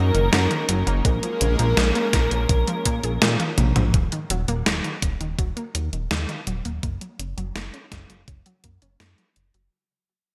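A glossy, up-front chorused synth bass anchors this cinematic, nostalgic synthwave fragment in Eb minor at 83 BPM, joined by a gated 80s digital drum machine with a gated-reverb snare, a thumpy electronic kick from 1.0 s, a bold dark unison lead carrying the melody over an airy dreamy second line and a thick lush unison pad, all three falling away at about 3.8 s during a drum fill, while a round analog pluck keeps arpeggiating under a filter sweep as the bright 1980s-style hall-reverb mix fades out from 3.9 s.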